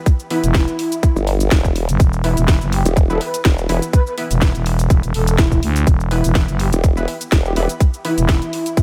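A digital ambience carries this swaggering, aggressive bass house cut at 124 BPM in E minor, with a 16th-note swing over a tight, up-front electronic kick and a garage kit of cracking snare, cabasa and warm hats. A growling, thick FM bass holds the low end with sidechain pumping, while a formant-sweep wobble bass with chorus and tube saturation surges in from 1.2 to 3.8 seconds and again at 6.7 seconds. Above them a breathy, flute-like lead with vibrato, chorus and dub echo carries the melody, and bold, detuned orchestra-hit stabs with built-in reverb, pumping and echo punctuate the groove.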